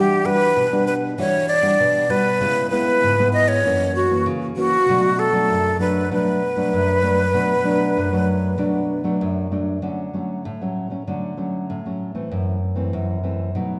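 Lively and sunny, this straight-feel samba excerpt at 97 BPM sets a breathy, hollow jazz flute melody with vibrato up front over full-bodied, thumb-plucked nylon-string guitar accompaniment in B minor, with the flute dropping out at 9.2 s and the guitar carrying on alone as the harmony moves to D major at 9.8 s, all bathed in a wet scoring-stage reverb.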